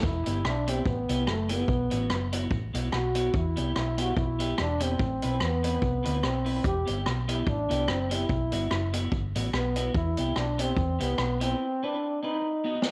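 Mischievous and energetic, this swung ska excerpt puts a breathy, close-miked trombone up front on the melody with vibrato and slapback echo, backed by a dark, round hollow-body bass, a vintage drum kit with a high-tuned snare and punchy kick, and a clean, picked electric guitar carrying subtle chorus and slapback echo, inside a wet spring-reverb space.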